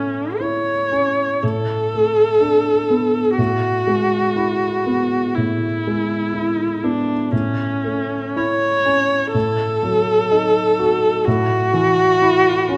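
A single bowed viola sings the melody up front with a close, expressive voice, its soft attack, vibrato and gliding portamento giving this serene romantic classical passage a tender, unhurried rubato feel. Beneath it, a baby grand piano offers intimate, natural accompaniment in a lower register, its action noise audible as the harmony moves over a steady A in the bass before settling on an open A5 chord at 11.3 seconds. A moderate recital hall reverb surrounds both instruments in this short fragment from a longer piece.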